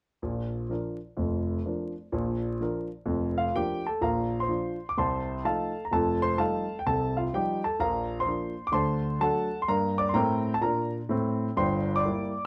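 A warm grand piano opens at 0.2 s, playing solo in an exuberant, swinging stride jazz style. Its tone is present and up front with long sustain, covering a broad range from deep bass to bright upper notes, as the harmony moves through dominant and minor chords after a new section begins at 4.0 s. A moderate club reverb and vinyl crackle give the recording a vintage feel, and the passage is cut from a longer piece, ending at 12.4 s.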